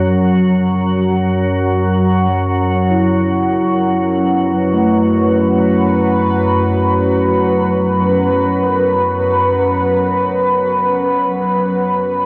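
Dark ambient drone in free time, centered on F# minor and tuned slightly sharp of standard pitch, this excerpt from a longer piece feels cavernous and dark. An organ-like drone sits up front in the low register, calm and sustained, its slow attack and long release thickened by ensemble chorus, phaser and its own reverb. Above it a sweeping resonant pad holds sustained chords, its detuned sawtooth-and-triangle tone bright and evolving, with a sub octave and a filter swell, dressed in chorus and shimmer reverb. A gamelan-type bronze metallophone plays soft arpeggios struck with padded disc mallets, its ringing metallic voice mellow and smooth, echoing through delay. The whole mix sits in a cathedral reverb with a 5.0 s decay and carries the warbling pitch drift of a worn cassette tape, before fading out from 8.2 s to the close at 12.3 s.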